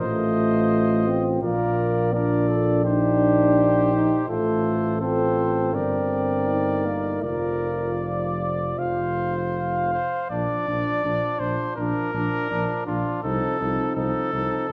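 Heard through the lush reverb of a recital hall, this noble, stately classical brass quintet fragment moves with a flexible rubato as a clear trumpet with light vibrato and a smooth top carries the melody over a flugelhorn second line, while a distant, mellow trombone and a warm French horn set in the background provide accompaniment above an up-front, soft-attacked tuba bass.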